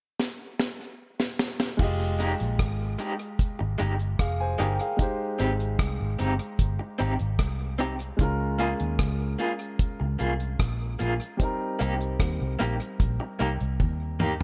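A tight, high-tuned reggae drum kit with gated reverb opens this bittersweet, smooth lovers rock cut in F minor at 75 BPM with a fill before a round, foam-muted electric bass and a mellow, dark baby grand piano enter at 1.8 seconds, joined by slightly broken-up, lo-fi electric guitar stabs with tremolo, as the light room ambience carries the chords from Fm9 through Abmaj7 and Db6 to Cm7 and a closing drum fill at 13.8 seconds.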